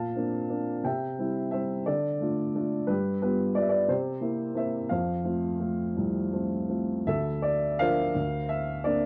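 A woody upright piano with long sustain sits up front in this calm, lyrical classical solo, unfolding in 6/8 at a free, rubato pace of 53-61 BPM in dotted quarters. Cut from a longer piece and lasting 9.1 seconds, it moves in F major from Bbadd9 through C, Dm, G7 and C7 to settle on F. A brief new section opens at 7.1 seconds on Dm before closing on Bbadd9/D, all within a dark, warm production touched by light reverb.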